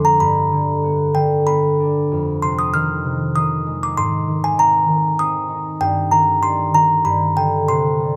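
A gentle, dreamy children's lullaby in 3/4 at 96 BPM with a rubato feel, this short fragment sets a delicate, tinkling music-box melody, small-boxed, dark and smooth, high over warm, ringing thumb-plucked concert harp accompaniment, both up front in a close, detailed recording with little reverb as the harmony drifts from G through Fm7, Abadd9 and Eb6/G back to G.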